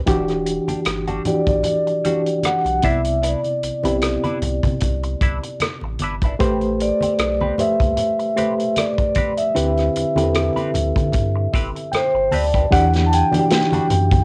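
A lightly swung 4/4 groove at 76 BPM in E minor drives this silky, cinematic excerpt of lush 1970s-style soul, where a punchy-kicked vintage drum kit with a rolled-off top and a deep, round sine sub bass with tube saturation anchor a reedy, worn electric piano with fast tremolo and plate reverb that plays a fill at 11.1 seconds, while a compressed semi-hollow guitar plays a riff through wah, close, dry, low-tuned congas sit in the background from 0.7 seconds, a soft-mallet vibraphone carries a ringing melody with slow motor vibrato, and a very quiet percussive tonewheel organ with slow rotary speaker adds dark sustained chords at 12.7 seconds, the whole mix captured with light reverb on a home cassette recording.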